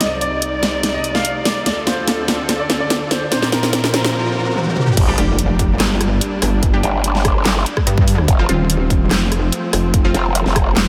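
This heavy, aggressive stretch of half-time wobble dubstep, cut from a longer piece, opens on a build-up where a smooth concert grand piano carries a short melody drenched in lush chorus and delay, over dark, woody bowed strings holding sustained chords. A layered dubstep drum kit sits up front through the build, its huge snare joined by handclaps, hi-hat, rim clicks, toms and crash cymbal in fills toward the drop, while a very quiet electronic riser and impact lies underneath. The piano falls away at 3.7 seconds, and at 5.0 seconds the drop lands with a punchy electronic kick and a growling, formant-filtered bass, joined moments later by a pulsing, detuned pluck wobble bass, both basses saturated and chorused. A bold sawtooth stab with an orchestra-hit character flickers in the background with its own reverb and delay, and the strings pump against the sidechain throughout. The whole mix is soaked in a huge ambient reverb that lends the aggression a dreamy haze.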